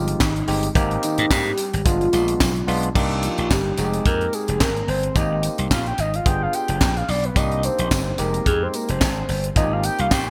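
A round, octave-layered synth lead with chorus, phaser, delay and vibrato carries the melody in this danceable early-eighties boogie funk cut at 109 BPM in C minor, taking a solo from 3.0 seconds over a looping Fm7, Abmaj7, G7b9 and Cm7 progression. Beneath it, a barky, lightly overdriven tine electric piano plays the chords, while a punchy, bright slap bass sits up front with a tight funk kit whose high-tuned snare, tight kick, hi-hat, handclaps and crash are treated with gated reverb. A jingly tambourine ticks along in the background, and the whole piece has a lightly swung sixteenth-note feel and a polished, bright 1980s-style digital sheen.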